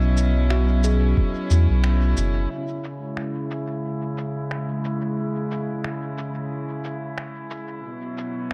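A meditative, hazy ambient dub excerpt in C# minor at 90 BPM with a gentle 16th-note swing opens on rich, reedy, gut-string chamber strings holding low-pass-filtered Bsus4 chords over a round, tube-saturated sub bass and soft, chorused FM bell arpeggios trailing tape echo in the background, while muffled, pitched-down shaker and finger snaps with dub echo enter and a single thumpy kick lands at 1.2 seconds before a band accent; the bass drops out at 2.5 seconds as the harmony moves to C#m and a filter sweep begins on the distant, lightly vibrato-tinged strings, and the bell stops by 3.4 seconds, leaving strings and percussion in a dark, lightly reverberant haze that returns to Bsus4.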